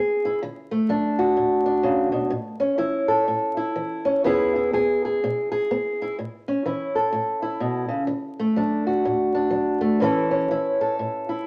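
A fingerpicked old ladder-braced acoustic guitar carries this short blues excerpt alone from start to finish, its boxy, woody tone sitting up front in the mix. The dark sound of old strings gives the playing a worn, soulful character, while the swung feel lends it a swaggering ease. The guitar ranges from A2 to A4, moving through D, A and E chords before cycling through A, D and A again in a repeated section that begins at 6.2 seconds. A wet studio reverb surrounds the instrument, and a layer of vinyl crackle adds an aged patina to the recording. The brief fragment, cut from a longer piece, ends at 11.5 seconds.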